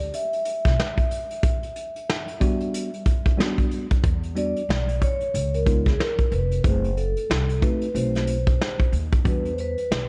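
Jazz-hop with a nocturnal, mellow swing, cut from a longer piece: a vintage brush kit with a punchy kick and rolled-off top sits up front over woody, growly pizzicato upright bass, while a ringing soft-mallet vibraphone with slow motor vibrato and slapback echo carries the melody and takes a solo from 4.0 seconds, and a worn, slightly out-of-tune tine electric piano accompanies from 2.4 seconds, set in a dark small-room production with light reverb.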